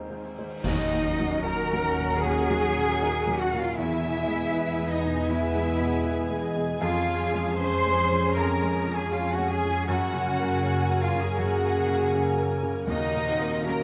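A rubato 79 BPM pulse in 4/4 carries this longing, moving cinematic film score, cut from a longer piece, where polished piano, ringing harp arpeggios and lush muted violas open at 0.0 s before veiled con sordino violins take the melody at 0.6 s alongside a hollow, airy flute and a second violin line, warm French horns sustain chords over dark up-front cellos and close double basses, dark cymbals with bass drum mark a band accent from 0.6 to 1.4 s, and hard-mallet timpani return at 12.9 s, all in a moderate scoring-stage reverb.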